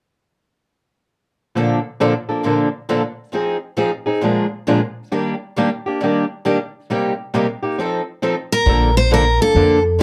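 Two picked acoustic guitars open this lively, playful piece of acoustic string swing at 1.6 seconds, comping together in Bb major at 135 BPM with a swung 4/4 feel. The louder steel-string guitar is dark and up front. Beneath it, an old ladder-braced guitar adds a boxy tone from its worn strings, sitting lower in the mix. The harmony moves from Bbmaj7 through Fm7 and Bb7 to Ebmaj7, then Cm7 and F7 before landing back on Bbmaj7. At 8.5 seconds a second steel-string guitar takes a brief, bright melodic line with fresh strings and audible finger squeak. At 8.7 seconds a pizzicato upright bass on gut strings enters up front with a woody, thumpy low end, all within a moderate club reverb.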